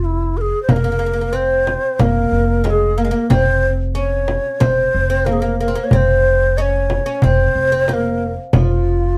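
Melancholic and hypnotic, this short cut from a longer Arabic maqam ensemble piece moves at a straight 92 BPM in 4/4, in F minor with tuning at A4 = 441 Hz, under light reverb and a dark production. A breathy, low ney carries the melody up front with vibrato and a soft attack, ranging from E4 to Eb5, while a thumpy pizzicato upright bass holds F1 beneath it from the opening. At 0.7 seconds a woody, fretless oud enters with a plectrum-plucked second line between F3 and Db4, joined by a small, close and dry frame drum that stops at 8.7 seconds.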